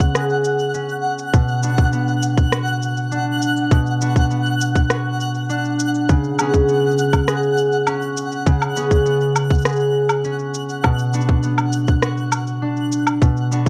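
Intimate, delicate folktronica in B dorian at 101 BPM, cut from a longer piece and moving between C#5 and Bm, where mellow, ringing fingerpicked concert harp arpeggios sit up front through a low-pass filter and tape echo, a tight, tape-warm electronic kick drum with studio reverb anchors the beat alongside a softer layer of electronic shaker, rim click and woodblock, and a twinkling granular texture with bright octave-up shimmer, slow attack and long release sparkles high above, all within a dry, close 1970s-style studio sound.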